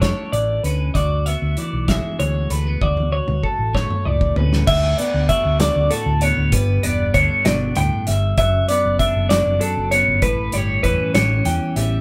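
Bright and intricate, this short fragment of math rock and midwest emo moves in a straight-feeling 6/8. Two clean, picked twelve-string electric guitars carry the harmony: one sits up front with a twangy, compressed accompaniment and a warbly pitch drift, while the other plays high, twangy, compressed arpeggios. Beneath them, a dark, round hollow-body short-scale bass, fingered and amped, anchors the low end. A loose indie drum kit, acoustic and up front in a small, pumping room, pairs a fat snare and tight kick with hi-hat, crash and toms, and plays a fill from 2.8 to 4.7 seconds. At that point the chords shift from extended colours like Bm11/D and E9 to a cycle of D6, G6, D6/F# and A7, all captured as a band playing live in one room with light reverb.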